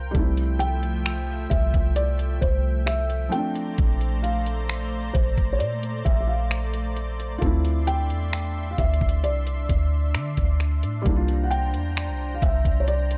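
A slow, straight four-beat groove from a detuned 8-bit drum machine sits up front from 0.1 s, its sampler-style finger snaps and hi-hat riding over a thumpy kick. This contemporary R&B excerpt carries a late-night, longing mood. A soft 808-style bass sits just as close, with round, sine-like tones that strike quickly and then decay in the low register. A felt-muted upright piano plays intimate, short-lived accompaniment chords, its action noise audible, while a lush, thick unison pad of detuned sawtooth and square waves holds bright sustained chords with a slow attack, long release and chorus. From 0.6 s a dark concert grand piano carries the melody in a high register, its boxy, mellow tone trailed by tape echo. The progression moves from Fmaj9/C through Bbmaj9 and Dm9 to C7sus4, in a dry, dark mix with a faint mains hum beneath it.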